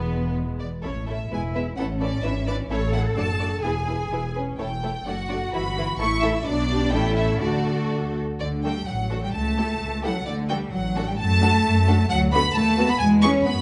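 Moving at a quick 129 BPM in 2/4 with a rubato feel, this spirited, lively classical-period movement for string orchestra is cut from a longer piece and settles into D major from 4.6 seconds. The first violins carry the melody up front, their rich, smooth vibrato tone spanning B4 to C#6, while the second violins add a focused, lush second line beneath them. Violas fill in the accompaniment with an even, gently glowing sound, and the cellos and double basses share the bass, the cellos focused with a smooth top and the basses expressive and distant yet present. The harmony moves briskly through A, E7/G#, D/F# and Bm before reaching D, then a later passage from 8.4 seconds turns through A/C#, Bm7/D and B7/D# to close on E. A moderate recital hall reverb lends the ensemble a sense of space, with a softened upper end keeping the sound mellow.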